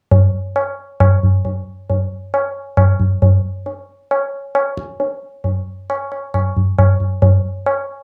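Indian classical music in a meditative, serene mood, this short passage is cut from a longer piece and moves at 135 BPM in a straight 4/4. A lone tabla carries it from 0.1 to 7.8 seconds, tuned high with a short ring that keeps each stroke crisp and clear. The drum sits up front, its acoustic tone carrying a touch of live room around it. There is little reverb, so the sound stays close and dry, with the character of a home recording on cassette. The whole fragment forms a single section, giving a brief, calm glimpse of the rhythm.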